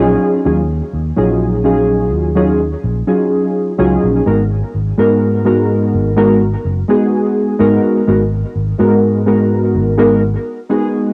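Warbling, detuned synth keys with a sawtooth edge and 12-bit sampler grit open this hazy, nostalgic vaporwave excerpt at a slow 63 BPM in G# dorian, joined from the start by a round, dark fingered electric bass sitting up front. The keys, soaked in subtle chorus, tape echo, plate reverb and cassette wear, drift from D#m11 to G#m9 at 4.3 seconds. The bass drops out at 10.4 seconds while the keys linger to 11.1, all set in a small room with the soft murk of a home cassette recording.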